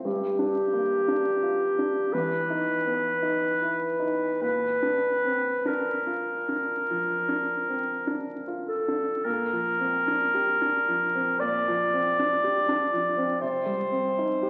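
Heard through the crackle of a very old 78 rpm record and a wet concert-hall reverb, this luminous, pastoral fragment of an impressionist classical duo sets a mellow, distant solo clarinet melody up front over a present baby grand piano accompaniment, unfolding in a rubato 4/4 and moving into a new section at 9.2 seconds.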